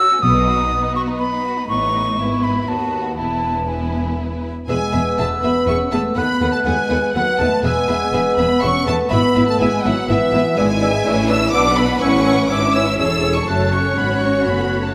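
A wet scoring-stage reverb surrounds this cheerful, graceful excerpt from a quick classical-period movement for symphony orchestra, moving at 122 BPM in 3/4 in E major before shifting toward A major at 10.6 s. Expressive, vibrato-rich violins carry the melody over a pure, straight-toned flute and a second violin line, with focused violas, intense cellos and double basses beneath, and a brief timpani stroke in the background at the start. At 4.7 s a dark clarinet, a mellow bassoon and the mellow sustained chords of a French horn section join the texture.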